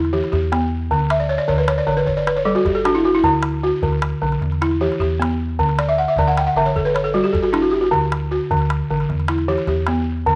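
West African traditional string and xylophone music in a flowing 12/8 at 103 BPM in D major, this short cut from a longer piece is led by an up-front balafon playing woody, buzzing arpeggios with soft rubber mallets, breaking into fills at 1.1 and 5.8 seconds. Beneath it sit a dark, metallic FM bass with a fast attack and decaying tail, and a small, close calabash keeping time quietly. The chords cycle through Em, D5, G5 and D in a moderate echo-chamber reverb with studio ambience, and the vintage, band-limited balafon tone has a soft, rounded top end.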